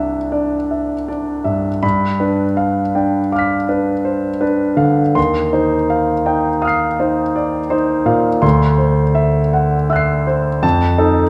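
A clear concert grand sits up front in a wet recital-hall reverb, its deep bass, long sustain and audible action noise giving the sound an intimate, polished presence. This serene, hazy impressionist solo piano piece moves in a slow, rubato 9/8 at 54 dotted-quarter beats per minute, ranging from C2 to C7. The harmony drifts from Cadd9 through G7, Eb69 and D9 to F7 at 10.6 seconds, shortly before this fragment of a longer work breaks off.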